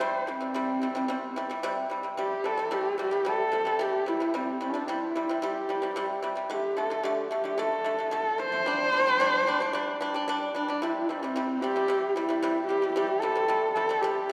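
Mongolian folk at 111 BPM in a straight 4/4, galloping and vast: a husky, nasal horsehead fiddle carries the bowed melody up front with vibrato, portamento and a soft attack, while a mellow, percussive pipa plucked with fingerpicks plays dry arpeggios beneath it, all set in the long reverb of a church or concert hall as the music moves from C5 to D5 at 6.5 s and G5 at 8.7 s before returning to C5 at 10.8 s in this short cut from a longer piece.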